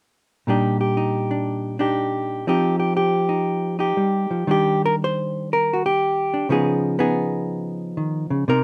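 A swung eighth-note feel at 120 BPM in 4/4 carries this short solo jazz piece, loosened by a rubato touch and cut from a longer performance. A lone electric hollow-body jazz guitar plays from 0.5 to 8.6 seconds, its clean, dark, fingered tone sitting up front and ranging from Bb2 to C5. The harmony in Eb major moves from Ebmaj7 over Bb to Fsus2, then into a second section at 4.5 seconds that lands on Ebmaj7 before turning to Db9. Close, detailed microphones and little reverb give the instrument an intimate, dry presence. The mood is swinging and sophisticated.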